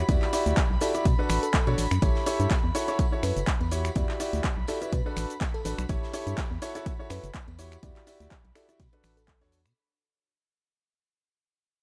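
A soulful, bittersweet piano house piece in B minor at 124 BPM opens on warm, bowed chamber strings holding soft sustained chords in the background over a hollow, dark, organ-like FM bass, both pumping with sidechain, as a clear, intimate grand piano with audible action noise and delay plays an up-front riff through Em9, Bm7, A7 and F#m7, driven by a punchy, tape-warm electronic kick and a small-room analog drum machine of cabasa, finger snaps, handclaps and hi-hat, with a very quiet acoustic rock kit and a faint, vintage tambourine beneath, while a sparkling, bell-like FM electric piano with chorus and delay enters at 0.8 seconds before the whole excerpt fades out from 2.0 seconds.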